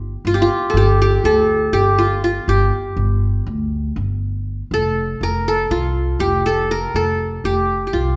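Soulful and melancholic, this Turkish piece in 9/8 moves at 242 BPM in eighths with a straight feel, settling into F makam rast from 4.7 s. A bright, plectrum-plucked qanun with triple strings carries the melody up front, while a woody, growly pizzicato upright bass with steel strings holds down the low end beneath it; both play throughout. A moderate recital hall reverb surrounds the pair, and the recording is cut from a longer piece, ending at 8.2 s.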